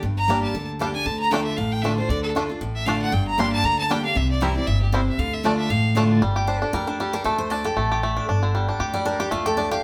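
A full-bodied jumbo acoustic guitar and a woody, dark pizzicato upright bass open this lonesome, rustic bluegrass cut in D minor at a brisk, swung 233 BPM. They are joined from 0.2 seconds by an intense, clear bowed fiddle with light vibrato and a smooth top, and from 0.3 seconds by a twangy, percussive fingerpicked banjo rolling out arpeggios. The fiddle leads the first pass until the bright, fresh-stringed guitar steps forward for its own solo at 6.2 seconds, all of it captured as a live band in a stone room with moderate reverb.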